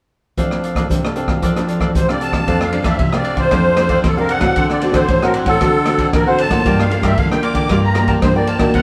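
A reedy musette accordion, shimmering with its wet tuning, sits up front and carries the melody from 2.0 seconds in this joyful, lively samba and choro excerpt. Beneath it, a crisp, picked cavaquinho and a fingerpicked classical nylon-string guitar provide the accompaniment. At 2.5 seconds a second nylon-string guitar, thumb-plucked and full-bodied, takes up the bass from further back. An acoustic jazz drum kit stays prominent with hi-hat, ride cymbal, rim clicks and a boomy kick, its dark cymbals and rolled-off top giving it a smooth, small-room character. The harmony moves through F6, D7 and Gm9 in a straight 4/4 feel, and the band plays live together in a stone room whose reverb surrounds the ensemble.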